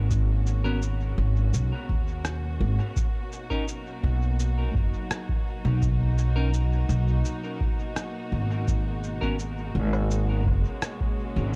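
An ambient dub excerpt with a meditative, hazy mood, where a soft-attack bowed string section fades in on a sustained G#m11 chord over a woody, thumpy pizzicato upright bass with tube saturation, a deep electronic kick re-recorded in a large room, muffled, pitched-down cabasa, rim click and woodblock carrying dub echo, and clean picked electric guitar stabs, also echoed, entering at 0.6 seconds, all set in an echo-heavy digital ambience.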